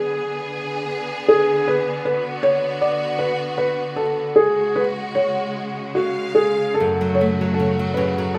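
A felt-muted upright piano carries the melody from the start, its soft, intimate tone sitting up front over lush, bowed strings that hold clear, vibrato-touched chords in this gentle, dreamy lullaby in a loose, rubato three-beat sway. At 6.8 seconds a small, bright nylon-string guitar joins with fingerpicked accompaniment just as the harmony settles onto F# minor. A moderate recital-hall reverb wraps the parts in a soft, dreamlike space, and the passage is cut from a longer piece.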